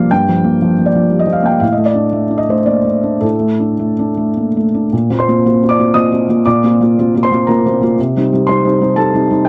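A felt-muted upright piano opens on a Gm7 chord, its tone mellow and intimate, with the thick felt softening every note. This short fragment of neoclassical minimalist piano is in Bb major and 3/4, moving with a rubato feel at roughly 104 to 121 BPM. The solo piano spans G2 to Eb6, passing through D5/A before settling on Bbsus2 at 4.9 seconds and Cm at 8.0 seconds. The opening phrase returns in the second half, giving the music a peaceful, hopeful calm. The piano sits up front in a dry, close, 1970s-style studio sound touched by light reverb.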